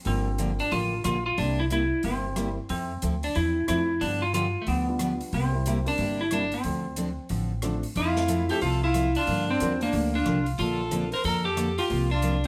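A brisk 4/4 swing at 182 BPM drives this short western swing clip in F major, its eighth notes lilting with a down-home, swinging mood. The upright bass sits up front, plucked and thumpy with a woody tone, while a big-band drum kit keeps time on hi-hat, rim click and a medium-tuned snare, sounding airy and polished with a hall quality. A picked steel-string acoustic guitar fills out the accompaniment with a full-bodied dreadnought tone and audible finger squeak, and a dark, mellow upright piano murmurs in the background, its vintage action noise audible, until it drops out at 11.1 seconds. Out front, a clean electric lap steel carries the melody with fingerpicks and slide, bathed in plate reverb. At 8.0 seconds a single bowed fiddle joins with a clear, earthy second line touched by light vibrato, over changes that move from Gm7 and C7 through Fmaj7 and Bbmaj9 to a closing C7sus4, all within a lightly reverberant room.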